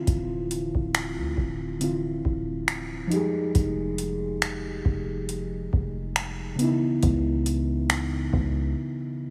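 The recording sits in a light reverb and digital ambience, with the synth keys and drum machine placed up front. This is a slow, longing and sensual piece of contemporary R&B with a lightly swung sixteenth-note feel, cut from a longer piece. Muted, felt-like synth keys carry the accompaniment, soft and full-bodied with a dark, intimate tone, a sub octave, a filter sweep and chorus, moving through Dm9, Fm9 and Dbm9. Beneath them, a deep, boomy 808-style bass with a sine core, a fast attack and a decaying tail anchors the low end. A booming analog drum machine supplies a deep kick, metallic hi-hats and finger snaps, all with a tape-tinged character. At 8.8 seconds a brief break leaves the keys sounding alone until the close at 9.3 seconds.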